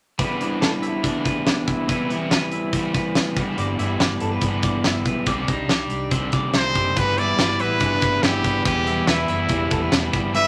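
Jangly indie pop at 142 BPM in G major, nostalgic and breezy, where an up-front crunchy overdriven guitar picks its accompaniment beside a twangy, compressed twelve-string electric guitar playing spring-reverb arpeggios over a polished big rock drum kit with a fat snare and punchy kick, a dark, round, foam-muted fingered bass enters at 3.6 seconds, and a brilliant trumpet with vibrato and scooped notes carries a forceful pop melody from 6.6 seconds, all within a moderate club reverb.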